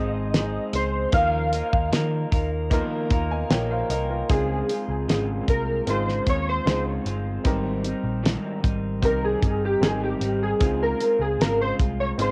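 Cassette-saturated and close in a small booth, this hazy, laid-back indie bedroom-pop excerpt at 76 BPM sets warbling, detuned lo-fi synth keys with tape echo up front for the melody and a solo from 4.3 s, over a woody, slightly detuned upright piano in the background, a twangy, slightly broken-up electric guitar, a round, foam-muted vintage bass, and a dry, damped 70s drum kit with a fat snare and tight kick entering at 0.3 s, moving from Ab through Ebsus2 to Dbmaj7 and Abmaj7.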